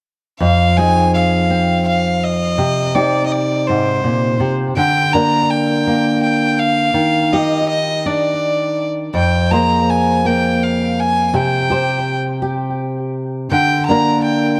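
A cassette-tape sound steeped in echo fills this short clip, with a moderate echo-chamber reverb of 1.8 seconds lingering around both players. It is an intimate, reflective acoustic folk-pop ballad in 6/8 at 55 BPM, counted in dotted quarters with a straight feel, set in F dorian and tuned to A4 = 442 Hz. A single bowed violin carries the melody between C5 and Bb5, its nasal, airy tone touched with light vibrato and trailed by analog delay. Beneath it, a full-bodied nylon-string guitar is fingerpicked from F2 up to C5, with a deep classical character, audible finger squeak and its own analog delay. Both instruments sit up front and play together from 0.4 to 14.6 seconds, moving through Fm7, Cm, Gm/D, Ebmaj7, Fmadd9 and C5 before returning to Gm/D.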